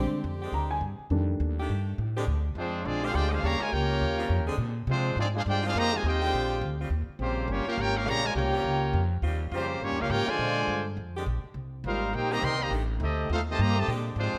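Brassy and swinging, this jazz excerpt moves at a brisk 207 BPM in 4/4 with a swing feel on the eighth notes. A dark, mellow baby grand piano opens with an intimate, up-front sound, its action noise audible and its notes short, before falling silent at 1.6 s. An upright bass with woody, thumpy gut strings plays pizzicato underneath throughout, while an edgy, close-miked saxophone section holds sustained chords with light vibrato. At 2.6 s a bright, present trumpet section takes the melody up front, joined by a clear, tight trombone section playing a second line. The harmony circles Bb13, Eb13 and F13 with passing Fm7 and Cm7 chords, and a moderate large-studio reverb gives the ensemble a roomy sheen.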